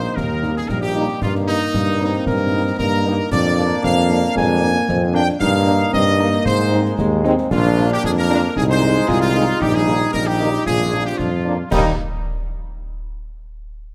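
A festive, rousing military-style march for wind band in a straight 2/4, cut from a longer piece, with a warm trumpet section carrying the melody up front, its light vibrato and tight classical phrasing leading the band. A mellow tuba anchors the bass just as prominently, while a euphonium's second line, soft-attacked trombone chords and a smooth-topped French horn section, entering at 0.4 seconds, fill in the background. Close, dry concert snare, bass drum and dark clash cymbals keep the march pulse beneath it all, and a moderate concert hall reverb lends the brass a spacious glow.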